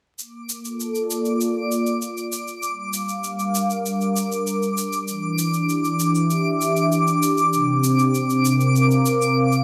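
Folktronica in Bb lydian at 98 BPM with a hopeful mood, built on an up-front analog pad of detuned sawtooth chords with soft attacks, long release and chorus, moving through Bbmaj7, Gm7, Em7 and C7sus4 while a filter sweeps across it. A quiet electronic shaker runs underneath, re-recorded in a large room, and from 1.0 seconds a twinkling granular texture adds a sparkling, octave-up FM shimmer high above, washed in its own reverb. The rough home-demo mix sits in a small room with vinyl crackle, and this cut from a longer piece runs to 9.6 seconds.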